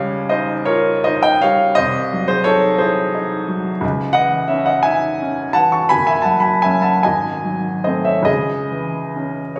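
In a rubato 12/8 sway of 46-59 BPM by the dotted quarter, this wistful, mournful romantic nocturne in C# minor, cut from a longer piece, features a natural, up-front baby grand piano alone from F#1 to C#6, its harmonies drifting from D#7/C# through G#7b9 to rest on C#m at 8.3 seconds, all bathed in a wet recital-hall reverb and captured by a phone in the room with compression.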